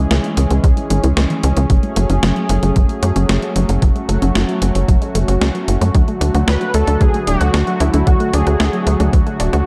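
A steady, straight 4/4 pulse at 113 BPM drives this nostalgic, cinematic synthwave excerpt in F# minor, where a punchy sawtooth sequencer bass with sidechain pumping and a thumpy, up-front electronic kick from 0.6 seconds sit under tape-warm 12-bit drum machine hi-hat and snare, a detuned analog pad holding chords with chorus and tremolo, lush plucked arpeggios with tape echo and a filter sweep in the background, and a thick, wave-folded unison lead carrying the melody from 6.5 seconds, all set in a dark production with light reverb over chords moving from C#m to F#madd9 to D.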